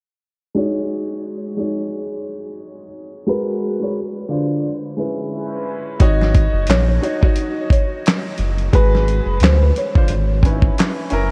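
A swung lo-fi hip hop groove at 88 BPM in 4/4 carries this melancholic, nostalgic excerpt from a longer piece, opening at 0.5 seconds with a bright, woody upright piano laying down accompaniment through cassette tape under a filter sweep, its action noise audible. At 6.0 seconds a gritty, compressed sampler-style drum kit with thumpy kick, handclaps, hi-hat and snare arrives alongside a round, deep analog bass, while a soft felt-muted upright piano carries the melody through analog delay. The dreamy mix is soaked in huge ambient reverb, cassette tape and a low-pass filter, moving through chords such as D#m7, G#m9 and C#m7/G#.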